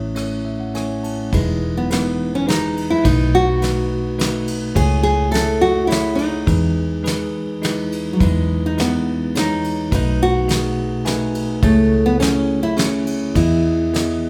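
Set in the moderate reverb of a recital hall, this heartfelt, tender acoustic folk-pop ballad in E major moves at 104 BPM in 3/4, with an up-front, full-bodied fingerpicked nylon-string guitar carrying the melody (finger squeak audible) over bell-like tine electric piano accompaniment, a dark, round, foam-muted fingered electric bass, and a soft brush drum kit with fat snare, punchy kick, ride cymbal and rim click, cycling through Emaj7, B7 and Amaj7/C#.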